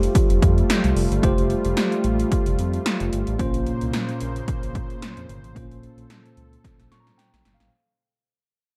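Punchy, overdriven 1980s-style electronic drums with gated snare and metallic hats drive a lightly swung 111 BPM 4/4 groove in this uplifting, romantic pop fragment. A sawtooth synth bass rings with ring modulation, a moving notch and vibrato. A detuned, chorused analog pad holds slow-attack chords. A clean tine electric piano accompanies, moving from Fadd9 to Bbmadd9 at 3.4 s, with piano and drum fills arriving at 6.6 s, while the whole dark, warm plate-reverb mix fades out across the entire fragment.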